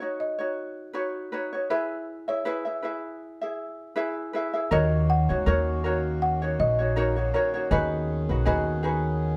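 A soft-mallet folk marimba carries the melody in this easy-going, sunny acoustic pop excerpt, its hardwood bars sounding round, dry and rustic. Beneath it, a fingerpicked ukulele sits up front with a light, warm accompaniment, moving from Badd9 to E at a relaxed 80 BPM in 4/4 with a gentle sixteenth-note swing. At 4.7 seconds the harmony shifts to D#m7 and then B6, and two more parts join: a pizzicato upright bass with gut strings, thumpy, woody and dark, placed up front, and a pedal harmonium holding quieter sustained chords with a reedy, breathing tone and a boxy small-room character. The band plays live in one room, with a moderate large studio reverb adding space around them. The passage is cut from a longer piece and ends at 9.4 seconds.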